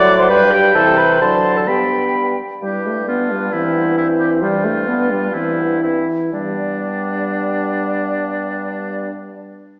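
A quick, cheerful classical-period movement for wind quintet in G major, moving at 116-136 BPM in a rubato 2/4, with an airy, hollow flute melody sitting in the background over an up-front oboe second line, a distant, roomy clarinet and close-miked French horn accompaniment and a mellow bassoon bass, all heard from further back in a wet concert hall with a small-speaker sound, slowing from 4.0 to 6.3 seconds in this brief cut from a longer piece.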